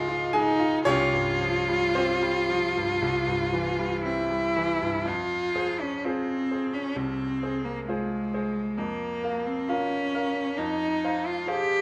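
Melancholic and elegiac, this romantic classical duo unfolds with a flexible rubato, a single bowed cello carrying the melody in a rich, focused voice with vibrato and a smooth top. A bright, brilliant grand piano with a short sustain accompanies it up front, the harmony leaning on a suspended chord before the second half settles into darker minor colours. A moderate recital hall reverb surrounds both players through this brief passage cut from a longer piece.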